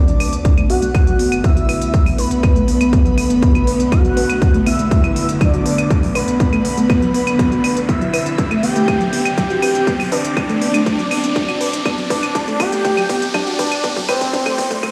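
Dark and driving, this melodic techno build-up is cut from a longer piece and rides a straight 4/4 pulse, with its chords moving from Bm7 to Cadd9 at 7.9 seconds. A thick, bold unison lead carries the melody with a wave-folded, ring-modulated edge softened by vibrato and dub echo, while an airy, dreamy second lead floats above it with chorus, delay and gliding portamento. Beneath them, a lush, woody string section holds sustained chords, a soft, round pluck spins filtered arpeggios through chorus and delay, and a deep, rumbling detuned saw bass sits in the background with tube saturation. Smooth electronic hi-hats and claves enter at 0.1 seconds, and the heavy kick drum joins them up front at 0.5 seconds, with a drum fill building from 7.9 seconds as a riser and reverse cymbal climb in from 3.1 seconds. Filter sweeps run through the whole passage, sidechain pumping makes the leads, strings, pluck and bass breathe against the kick, and the mix carries the hard, echoing character of a big sound system playing in a bare stone room.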